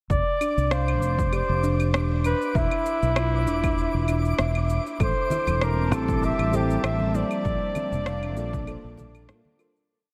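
A warm, vibrato-laden flugelhorn with scooped notes leads this sunny, reverb-soaked sunset chillout piece in F major at 98 BPM with a gentle 16th-note swing, carried by a round, up-front fingered electric bass, a punchy overdriven electronic kick, a light lounge beat of overdriven electronic cabasa, claves and rim click, a woody buzzing kalimba looping a six-step arpeggio that drifts against the bar with 12-bit grit and analog delay, and a twinkling granular shimmer on a held high note. Very quiet low-tuned congas enter at 5.3 seconds, followed by an ethereal detuned pad at 5.7 seconds and a soft, dark FM electric piano with chorus and phaser at 5.9 seconds, before the whole piece fades out from 6.6 seconds.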